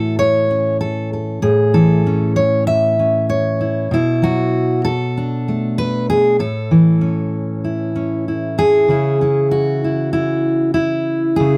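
Folk music for solo fingerstyle acoustic guitar, this short piece cut from a longer work has a warm, peaceful mood at 96 BPM in a straight 4/4 feel. A single fingerpicked steel-string acoustic guitar carries everything from 0.0 to 11.6 seconds, ranging from A2 up to E5 in A major, tuned to A4 = 439 Hz. Its jumbo body gives a full-bodied tone, and the close, detailed microphones place it up front, catching the finger squeak. The harmony moves from A to Bm7 and back to A, then shifts at 8.9 seconds to C#m as a new section begins. Light reverb adds a gentle sense of space around the guitar.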